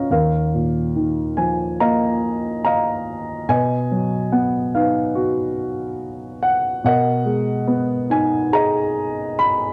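A dark concert grand piano plays alone throughout this short excerpt of lyrical classical solo piano, its mellow, deep-bassed tone sitting up front with a smooth, vintage character and short sustain colored by cassette tape. The mood is reflective and wistful, moving at around 71 BPM in 4/4 with a rubato feel in E-flat minor. The piano spans from Eb2 up to Cb6, and the harmony passes from Ebsus2 at the start to B at 3.5 seconds and then Abmadd9/Cb at 6.8 seconds. A moderate spring reverb with a 1.4-second decay lends some space to this home recording made on cassette. Cut from a longer piece, the fragment lasts just under 10 seconds.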